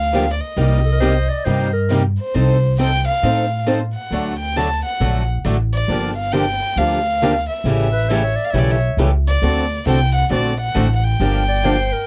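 A dry, close, 1970s-style studio sound frames this fiery yet bittersweet snippet of acoustic string swing in G minor, moving at 136 BPM with a swung eighth-note feel. Up front, a single violin carries the melody with an airy, sul tasto bow, soft attack and light vibrato, while a woody, thumpy gut-string upright bass plucks the bass line. A fresh-stringed parlour steel-string guitar and a boxy swing-style guitar, set further back, provide picked accompaniment with audible finger squeak, and a breathy clarinet adds a mellow second line with scooped notes from 0.8 to 2.0 seconds and again from 7.9 seconds.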